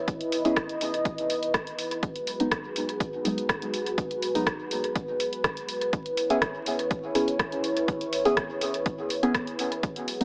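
A straight 4/4 pulse at 123 BPM drives this cavernous, meditative dub techno excerpt. It is built on a punchy, tape-warm electronic kick and an analog drum machine supplying hi-hat and rim click with dub echo, both sitting up front. From 0.4 seconds, a deep, mellow chord stab blends triangle, sawtooth and sine tones with a fast attack, a decaying tail and a filter sweep, treated with chorus, phaser, sidechain pumping and dub echo. Alongside it, a moody analog pad holds sustained chords from the start, its detuned sawtooth and triangle layers and sub octave arriving with a slow attack, colored by chorus and sidechain pumping. The harmony moves from C#m7 to G#m7 at 2.0 seconds and back to C#m7 at 5.9 seconds. Moderate spring reverb and digital ambience surround the parts, while heavily compressed radio-style sound, vinyl crackle and a small-speaker tone shape the whole recording.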